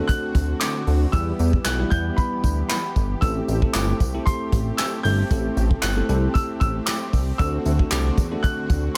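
Energetic and confident, this dance-pop excerpt moves at 115 BPM in a straight 4/4 in A dorian, with a warm grand piano carrying a high melody through tape echo over a bell-like tine electric piano and a smooth, detuned supersaw pad, both pumping with sidechain. Up front sit a soft brush drum kit with a punchy kick, medium-tuned snare, hi-hat and handclaps, and a retro, glossy chorused synth bass built from pulse, sawtooth and triangle waves with a plucky filter, which also pumps, while a jingly tambourine sits in the background. The hi-hats drop out from 1.1 to 3.2 seconds as the chords move from D7 to Em and settle on Am7, returning to D7 at 7.4 seconds, all within a studio reverb.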